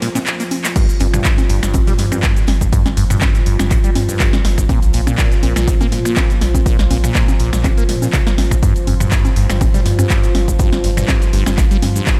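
Raw and trippy, this acid house cut from a longer piece moves at 122 BPM in G minor, with a light swing on the sixteenths. It opens on a short break, where a drum fill runs from 0.3 to 0.8 seconds before the up-front, tape-warm electronic kick drum lands at 0.8 seconds and the sub bass follows just after. A squelchy, resonant sawtooth acid bass drives the riff through a filter sweep, colored by phaser and analog delay and pumping against the kick. Beneath it, a round sine sub bass holds deep sustained notes, while a moody, nasal analog pad of detuned square, sawtooth and triangle layers sustains dark chords with subtle chorus and sidechain pumping. The drum machine fills out the groove with congas, handclaps, finger snaps, shaker, hi-hats, toms and crash over a short room on its snare, clap and hats, and a very quiet acoustic kit adds big-room snare and hi-hat far beneath, all set in light reverb as the harmony shifts between Bb5 and G7(no3).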